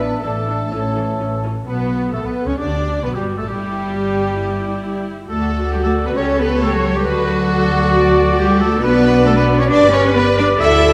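Bathed in the wet reverb of a scoring stage, this short cut from a longer piece is a quick, lively and graceful classical-period movement for symphony orchestra in D major at 134 BPM, played with rubato. A very quiet, woody violin section carries the melody, while a focused chamber violin section, a distant oboe, an airy flute group and a dark clarinet (heard only until 1.4 s) add second lines. Violas sit softly in the background, mellow French horns hold sustained chords, a cello section with portamento and a rich double bass section anchor the bass, and a trumpet section enters with stabs at 1.7 s.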